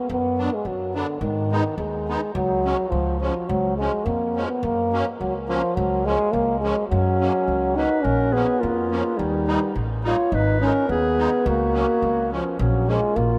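Set in a vast, echoing space with a long, huge reverb, this short cut from a longer alpine folk dance-band piece bounces along jollily at 106 BPM in a straight 2/4 in F# major. A clear, roomy euphonium carries the melody up front with light vibrato in a classical style, over a woody, pizzicato upright bass and the reedy, shimmering musette accordion filling in the accompaniment. At 6.9 seconds a mellow clarinet with a smooth top joins with a second line, as the chords move through G#m, C#, A#m and D#.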